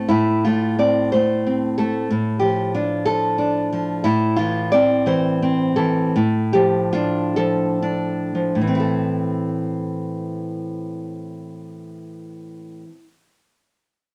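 Melancholic and wistful, this romantic piece for solo classical guitar unfolds in a lilting 6/8 with a freely breathing rubato feel. A single nylon-string guitar, fingerpicked and placed up front, carries everything, its fresh strings and warm acoustic tone sounding out clearly. The harmony rocks gently between A minor and D minor over an A bass, returning to A minor as a new section begins at 8.9 seconds. From 3.1 seconds the pulse gradually slows, drawing out the phrases before that return. A moderate studio reverb lends a soft halo around the instrument, and the guitar falls silent at 13.1 seconds in this passage cut from a longer work.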